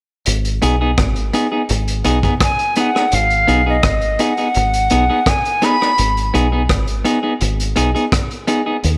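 A reedy, airy jazz flute carries the melody with tape echo from 2.4 to 6.3 seconds in this laid-back, hypnotic roots reggae excerpt at 84 BPM in G# dorian, resting on G#m over a deep, round fingered dub bass, a crunchy, gritty breakbeat kit of punchy kick, hi-hat and rim click, and a bright, twangy clean electric guitar with its own tape echo, set in a small room with light reverb.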